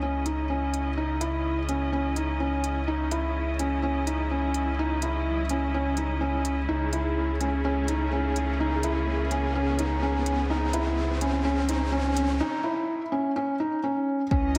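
Piano and strings electronica at 126 BPM in 4/4, hypnotic and intimate, this excerpt from a longer piece builds over C#madd9 moving to E/C# at 6.7 seconds, with a soft, felt-muted upright piano riff up front, its action noise audible and trailed by delay, over a round sine sub bass and distant, richly bowed symphonic strings holding sustained chords, both pumping from sidechain. Smooth, tape-tinged electronic hats tick from 0.3 seconds while an electronic riser climbs from 3.4 to 12.4 seconds into a break, capped by a single deep kick at 14.3 seconds. A moderate lush hall reverb and a small room ambience surround the mix.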